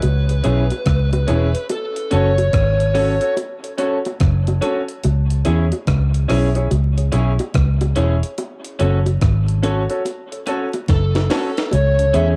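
Roots reggae at 72 BPM in C# minor, serious and laid-back, this short cut rests on a dark, round, foam-muted fingered bass up front and a gritty, pitched-up sampler-style breakbeat kit with a thumpy kick and high-tuned snare, joined by tight soft-handed bongos, brilliant grand piano stabs, a slightly broken-up small-amp guitar with dub echo, and a dark overdriven lead guitar melody that opens the piece and returns at 10.9 seconds alongside a drum fill, before a mellow tonewheel organ with key click slips in at 12.0 seconds, all over a C#m to F#m sway with vinyl crackle and cassette tape coloring the home-recorded sound.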